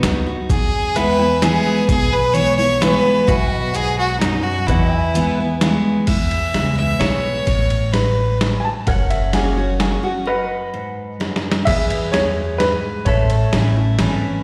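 In an easygoing three-beat lilt, this nostalgic honky-tonk country fragment sets a clear, focused fiddle melody over jumbo-bodied picked acoustic guitar, woody pizzicato upright bass, a gritty, pitched-down sampler-style drum kit up front and lush-chorused pedal steel chords, with a brilliant, slightly detuned upright piano carrying slapback echo entering at 8.6 seconds as the fiddle stops, then taking a solo at 11.7 seconds after a break at 10.3 seconds, the whole mix heard through a live club PA with moderate reverb.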